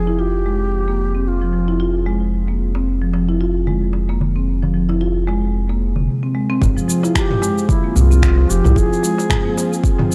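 Earthy and mystical, this organic downtempo excerpt moves at 112 BPM in 4/4 with a gentle 16th-note swing, sitting in F harmonic minor as the harmony shifts from Fm to Fmadd9 at 6.6 seconds. A woody marimba played with soft mallets carries arpeggios up front throughout, its tone shaped by a low-pass filter sweep and analog delay, while a smooth, detuned sawtooth pad holds sustained chords beneath it with chorus and sidechain pumping. A round, deep analog bass anchors the low end prominently until 8.9 seconds, its pumping tied to the sidechain. An airy bamboo bass bansuri with vibrato offers brief melodic phrases at the start and again from 7.2 seconds, touched by analog delay. A clay-shelled darbuka played with soft hands joins in the background at 2.7 seconds, and at 6.6 seconds a layered, tape-colored deep house kit with cabasa, finger snaps and toms arrives alongside a deep electronic kick set up front. 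The whole has a dry, gritty hardware character with little reverb.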